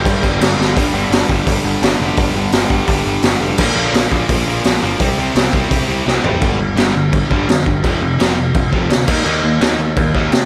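A raw garage drum kit sits up front in this energetic, rebellious punk rock excerpt at 170 BPM, its boomy kick and medium-tuned snare sounding gritty and saturated with a rolled-off top in a small room, with fills at 0.6 and around 6.1 seconds. Beneath it, a growly, punchy overdriven picked bass drives the low end while two bright picked guitars, one crunchy and overdriven, one distorted and compressed, play riffs in the background over G, Bb and C, and a very quiet double-tracked fuzz guitar adds texture until 6.4 seconds. From there the band shifts to power chords on G5, F5 and Eb5, all fairly dry with little reverb.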